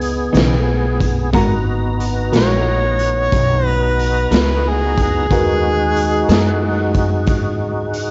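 Smoky and mournful, this slow 12/8 blues in G# minor at 61 BPM sets a very quiet baby grand piano and a full, lightly overdriven tonewheel organ with slow rotary speaker over a thumpy, woody upright bass and a gritty garage drum kit in a pumping stone room, while a dark, clean semi-hollow guitar with tremolo enters at 0.3 seconds and a clear, close-miked harmonica with tongue slaps and light vibrato carries the jazz-style melody from 2.4 seconds, the whole home cassette recording dulled above 7.7 kHz.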